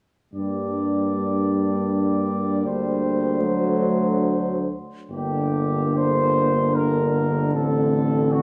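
A warm production set in a concert hall with moderate reverb frames this short, elegiac excerpt of a hymn-like classical piece for brass band in G minor, at 75 BPM in 3/4 with rubato and uneven, yearning beats. A dark, punchy, up-front trumpet section carries the melody while a very quiet, mellow French horn section adds a distant, roomy second line; a bright trombone with vibrato and a close-miked, soft-attack euphonium supply the accompaniment, and a clear, vintage-toned tuba holds the bass, the euphonium and tuba both with light vibrato. All five parts play together from 0.3 to 8.4 seconds, as the harmony moves twice from G minor to D7.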